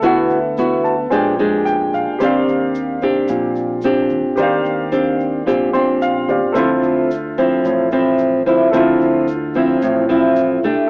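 Relaxed and breezy, this bossa nova excerpt moves at 110 BPM in a straight 4/4 and is cut from a longer piece. A warm, fingerpicked nylon-string guitar sits up front, carrying the accompaniment from A2 to G4, while a clear baby grand piano adds accompaniment higher up and slips in fills from 0.6 to 2.2 seconds and again from 5.5 to 6.5 seconds. Underneath, a dark, round, amped fingered electric bass stays in the background, and a grainy, mellow tube shaker ticks along in a small-room space. The harmony drifts through lush extended chords, moving from D69 and Bb13 to a long stretch on Ebmaj13 before settling on Dm9. Light reverb and the hazy character of a home cassette recording with an AM radio sound give the whole piece a faded, intimate feel.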